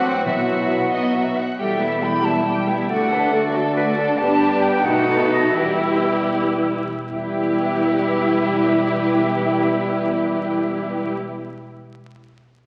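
In a straight 6/8 at 73-93 BPM counted in dotted quarters, this restless, dramatic excerpt from a fast romantic orchestral movement in E minor moves through Bsus4, B, Em, D, G and B7, slowing down between 3.5 and 7.1 seconds. A dark, distant violin section carries the expressive, vibrato-laden melody, while an airy silver concert flute, a very quiet clear clarinet and a second, focused violin section weave supporting lines. Beneath them sit a close viola section with soft attack and portamento, mellow vintage French horn chords, a cello section in the background and a rich, even double bass section. Timpani with medium mallets on calf heads sound briefly near the start and return at 7.1 seconds, and the whole ensemble sits in the wet reverb of a scoring stage under the crackle of a very old 78 rpm record.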